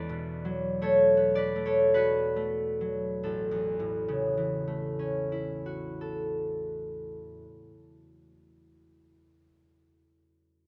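A ringing, fingerpicked concert harp sits up front in this peaceful, graceful solo classical passage cut from a longer piece, moving in a rubato 3/4 at 45-57 BPM in A major, slowing down through its opening E9sus4 before settling onto A6 at 3.2 seconds, spanning A1 to E5 within a moderate stone-room reverb.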